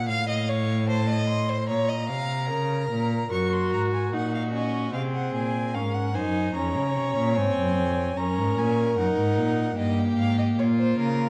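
Set in a reverberant recital hall with a dark production, this solemn, contemplative fragment of a baroque-style string quartet fugue pairs a woody, vibrato-laden first violin on the melody with a focused second violin line over an expressive, up-front cello bass marked by soft attacks and portamento, before a clear, up-front viola joins the accompaniment at 3.3 s.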